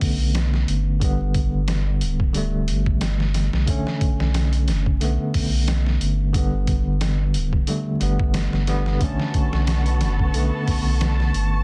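Trip hop in B minor at 90 BPM with a melancholic, dark cast, cut from a longer piece: a bell-like tine electric piano with tremolo and a round sine sub bass sit over a gritty, pitched-down sampler-style drum kit with a thumpy kick, joined at 9.0 seconds by a veiled, con sordino violin section holding lush chords and at 9.2 seconds by a flickering granular texture in the background, all in a dry, dense, heavily limited master with vinyl crackle.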